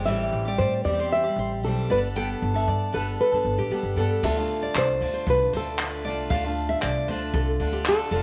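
A dark, full-bodied nylon-string guitar carries the thumb-plucked melody in this sunny, easy-going acoustic pop excerpt. Around it sit a picked steel-string guitar accompaniment, a second steel-string guitar playing higher arpeggios on fresh strings, and a woody, thumpy pizzicato upright bass placed up front, moving from Am7 to Gadd9. At 4.2 s, a distant, roomy brush kit with dark cymbals, a boomy kick and handclaps joins on a Dm chord, the whole sound held in a moderate plate reverb and a small room.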